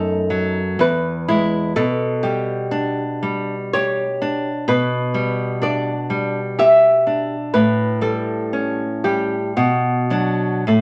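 A moderate studio reverb gives this short passage a gentle sense of space, with audible finger squeak on both guitars. It is a serene, lyrical romantic duo in 3/4 at a rubato 51-66 BPM. A boxy, fingerpicked flamenco guitar carries the melody in a high register, while a small, up-front nylon-string guitar supplies warm fingerpicked accompaniment beneath it through harmonies moving from D#dim/F# and E to G/B, then A7 and Bm by 9.6 seconds.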